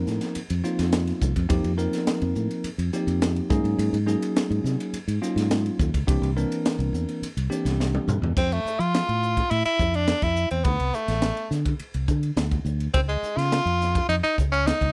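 A dry, close-up mix with little reverb puts every part up front in this soaring, slick electric jazz fusion piece, cut from a longer work and moving at 105 BPM in a straight 4/4. A bell-like, clean tine electric piano heard through its built-in speakers voices F9sus4, Ab9sus4 and C7 until 8.2 s, over warm, direct fingered electric bass and an acoustic fusion kit with bright cymbals, a high-tuned snare, a punchy kick and a pumping small-room sound. A drum fill leads into 8.4 s, where the music settles in F major and an edgy, forceful tenor saxophone takes a jazz solo with vibrato and scooped notes over Fmaj7, D5 and Db.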